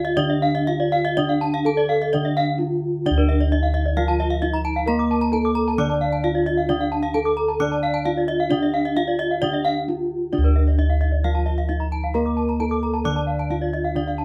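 A mellow bronze metallophone carries the melody of this hypnotic, brilliant Balinese gamelan piece, its paired tuning shimmering over soft, round bossed gongs in the bass, while a dry, full horn-mallet metallophone plays the accompaniment beneath and two more bright metallophones ring out arpeggios, one close-miked and the other airy, all heard live in a small room with moderate reverb and brief breaks at 2.4 and 9.6 seconds.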